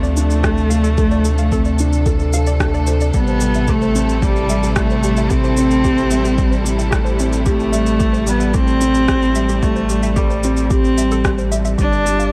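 A straight 4/4 pulse at 111 BPM, set by an overdriven, deep electronic kick from 0.4 seconds and a tape-warm shaker and rim click, drives this moving, hypnotic piano-and-strings electronica excerpt in A minor, where an expressive, up-front cello sings the melody with vibrato and portamento over lush sustained chords from a studio string section, a felt-muted upright piano riff with audible action noise and tape echo, a very quiet warbling lo-fi pluck playing arpeggios, a round sine sub bass with sidechain pumping, and a faint electronic swell around 2.7 seconds, all moving through Dm7, Am7 and G7 in a dark production with light reverb.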